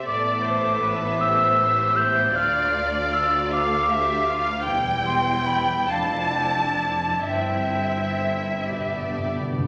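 Bathed in a wet scoring-stage reverb, this lyrical, serene passage from a slow romantic orchestral movement in a rubato 6/8 sets an intimate, softly attacked violin melody in the background beneath a lush, up-front violin section with portamento and a pure, straight-toned concert flute carrying second lines, over a rich, smooth viola accompaniment and distant, expressive cello and double bass sections, before timpani struck with hard mallets add a fill from 8.7 seconds.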